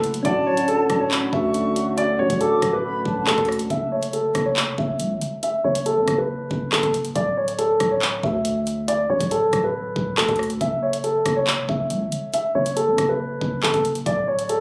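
Caught on a phone in a club-like room with light reverb and compression, this menacing, tense half-time drill excerpt at 139 BPM in F# minor sets an intimate, mellow grand piano melody with audible action noise and tape echo up front over a knocking electronic kit of metallic hats, handclaps and rim clicks and a growling, buzzy 808-style bass, while soft, round electric-piano-like synth keys, a deep, moody sawtooth pad in the background and an airy, distant flute with vibrato fill out the opening until 3.7 s, when those three stop and a filter sweep runs through to 14.6 s.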